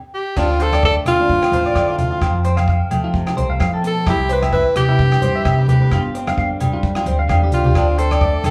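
A swung sixteenth-note groove at 130 BPM in 4/4 drives this joyful, carefree highlife guitar band excerpt, cut from a longer piece and opening with a drum fill and band accent. A breathy, bright alto saxophone carries the melody up front with light vibrato, entering at 0.1 seconds just before the rest of the band joins at 0.4 seconds. Two clean, picked electric guitars fill out the harmony: one comps with a twangy, compressed tone and spring reverb, while the other spins arpeggios higher up. Below them, a round, punchy fingered electric bass sits alongside a damped 70s drum kit with a tight kick, rolled-off top, hi-hat, rim clicks and crash, which plays a second fill before the chords return to Dm7. Ringing agogo bells and thin-skinned congas, the latter arriving at 0.7 seconds, add percussion in the background. The whole band sounds as if playing live in one small room, with a wet, short studio reverb over a progression of Dm7, F, Cmaj7 and G7sus4.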